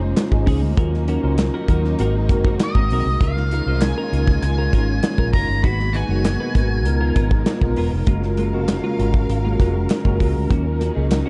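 This excerpt has a dark, warm production with light reverb and a small-room ambience, its top end gently rolled off. It is polished 1980s jazz-funk pop at 99 BPM in 4/4 with a straight feel, set in Db major, and the mood is urban and breezy. An up-front, smooth acoustic drum kit with a tight kick, medium-tuned snare and hi-hat drives the groove alongside a round, punchy, foam-muted fingered bass, while very quiet, crisp group handclaps sit beneath them. A tine electric piano with ensemble chorus plays the accompaniment, a clean, compressed picked guitar with analog chorus carries a riff in the background, and a distant bowed string section holds soft-attack chords with vibrato and portamento. From 2.6 to 7.7 seconds an octave-fuzz lead guitar adds a distorted, picked melody, and the harmony moves through extended chords such as Bbm11, Ab9, Db13 and Gbmaj9.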